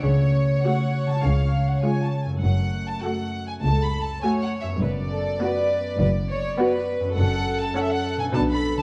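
Quirky and mischievous, this short excerpt from a playful, whimsical film cue in F# minor moves at 101 BPM in a straight 4/4, with a clear violin section carrying the melody over a rich, distant second violin line, ringing thumb-plucked harp arpeggios, a viola section entering at 0.6 seconds with floating accompaniment, and cellos and double basses supplying an intimate bowed bass, all sul tasto strings set in a wet scoring-stage reverb.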